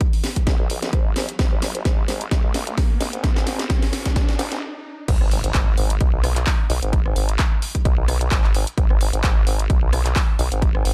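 A gritty, bouncy bass house excerpt opens with a build-up: a punchy, overdriven kick and a layered house kit with a cracking snare, handclaps, hi-hat, rim click and crash play a drum fill while a background riser climbs, and a nasal, resonant wobble bass with a vowel-like formant sweep enters at 0.5 seconds. A brief stop arrives at 4.6 seconds before the drop lands at 5.1 seconds with an electronic impact, the saturated, chorused bass pumping against the kick up front over a swung groove. The production is dark and dry.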